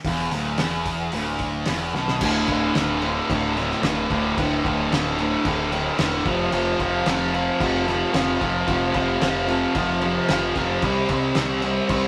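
Rowdy and swaggering, this garage rock cut from a longer piece drives along at 111 BPM in a straight 4/4, with a bright, double-tracked fuzz guitar riff sitting up front over power chords moving from D5 to F5 at 6.3 seconds and C5 at 10.8 seconds. A growling, overdriven picked electric bass digs low beneath it, while a cloth-damped, thuddy drum kit with a fat snare, tight kick and dark, muffled cymbals plays a fill at 1.9 seconds before the second section kicks in. The band sounds captured live in one room with moderate studio reverb, the drums lo-fi and gritty against the guitar's compressed bite.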